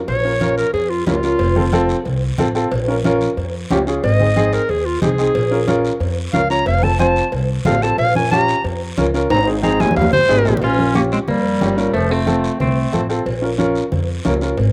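A clear, present clarinet leads this fiery, passionate cumbia at 182 BPM in Bb dorian, soloing in a classical style over a pizzicato, woody upright bass and a warm upright piano, with ringing, distant cowbell and timbales carrying slapback echo, soft, low-tuned congas in the background and a raspy guiro, before a drum fill at 9.3 seconds and a bright, clean semi-hollow electric guitar adding a second line from 10.6 seconds.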